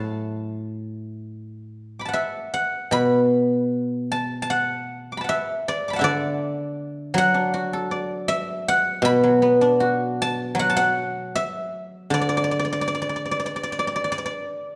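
A solo guzheng sits up front, its fingerpicked strings bright, ringing and silvery as it spans a broad compass from A2 to D6. This Chinese traditional piece for solo plucked strings moves at around 78 BPM in 4/4. The beats are uneven and the time is held loosely in rubato, giving the music a pastoral, flowing mood. Set in a D gong mode with tuning at A4 = 437 Hz, the 14.8-second passage is cut from a longer work and stays within a single section throughout. A moderate recital hall reverb, with a 1.5-second decay, gives the acoustic instrument the open bloom of a church or concert hall.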